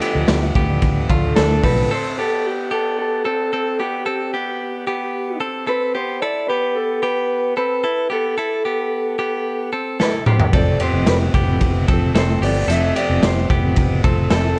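A cassette-tape sound with a touch of small-room reverb frames this bright, youthful slice of jangly indie pop, cut from a longer piece. A slightly broken-up, lo-fi electric guitar with harmonic tremolo carries the melody throughout, over twangy, scooped arpeggios from a clean direct-recorded electric guitar. A full-bodied fingerpicked acoustic guitar, a dark, round, foam-muted bass and a gritty, up-front garage drum kit with a punchy kick and gated reverb play only briefly at the start. The drums return at 10.0 seconds with a fill, and the acoustic guitar and bass rejoin around 10.5 seconds.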